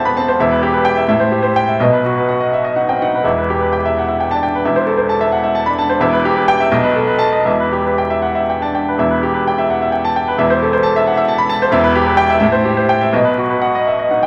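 A 6/8 pulse moves at roughly 76-92 BPM in dotted quarters, pushed and pulled by a free rubato. This short cut from a longer classical piece is a virtuoso piano study in E minor, passionate and stormy in mood. A clear baby grand piano plays solo for the full 14.3 seconds, ranging from E1 up to B5, its natural tone up front with a short sustain. Harmonies circle between E minor, A minor seventh and B major, with a B7 pushing back home near 6.7 seconds before the opening material returns at 9.0 seconds. The sound sits in a wet recital hall reverb, with vinyl crackle lending it an aged patina.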